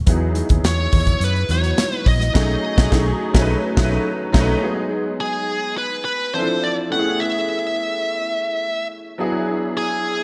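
Glossy and urban, this cut from a longer piece is polished 1980s jazz-funk pop in E major at 105 BPM in a straight 4/4, with bright digital production and a lush hall reverb giving it a studio sheen. A natural-toned baby grand piano carries the accompaniment throughout, its ensemble chorus adding shimmer to chords that move from Emaj9 and B13 through G#m7, Dm7 and Amaj7 before landing on E7. A dark, foam-muted fingered electric bass with a round, amped tone and an airy, up-front acoustic drum kit with a punchy kick and medium-tuned snare drive the opening, joined briefly by very quiet, saturated congas with a thick-skinned sound. The rhythm section then drops out at 4.5 seconds, during a band accent that runs from 2.4 to 4.6 seconds. From 0.7 seconds a bright, high-gain distorted lead guitar, picked and sitting up front, sings the melody over the piano to the end at 10.2 seconds.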